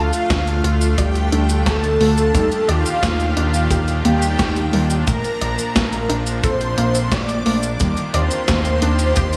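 A fat, detuned sawtooth bass sits up front with sidechain pumping in this dreamy, uplifting synthwave excerpt at 88 BPM, moving through Dm, Ebmaj7 and Bbmaj7 beneath smooth supersaw chords that also pump. A bold, thick unison lead with vibrato and a sub octave carries the melody through ensemble chorus, cassette tape and tape echo, while a shimmering vintage string machine plays a high second line and a warbly, dusty lo-fi pluck runs arpeggios in the background. A gated 80s digital drum machine brings hi-hat, shaker and a gated-reverb snare from 0.1 s, joined at 0.3 s by a punchy acoustic kick in a bright stone room, with light digital ambience around the mix.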